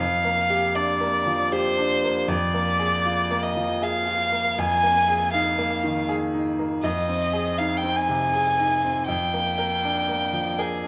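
Reflective and fragile, this short neoclassical passage for piano and strings moves at 80 BPM in a rubato 3/4, with a close, intimate solo violin carrying the melody in soft-attacked, airy sul tasto bowing with light vibrato above a brilliant, long-sustaining grand piano accompaniment, both up front in a large studio's wet reverb as the chords drift from Gm7/F through Bb7/F, Absus2/F and Fm7 before settling back on Gm7/F at 9.1 seconds.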